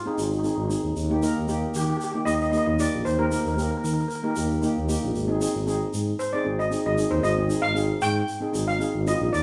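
Sunny and carefree, this brief calypso cut at 115 BPM in 4/4 with a light sixteenth-note swing features a shimmering lead steel pan struck with hard rubber sticks, carrying a vintage, band-limited melody up front, over a soft double-seconds pan accompaniment, a smooth, lightly vibrato-touched tuba bass played in a classical style, and a grainy egg shaker, all captured live together in a large studio with a lush 1.2-second reverb as the chords move from Ab to Eb and back to Ab at 5.1 seconds.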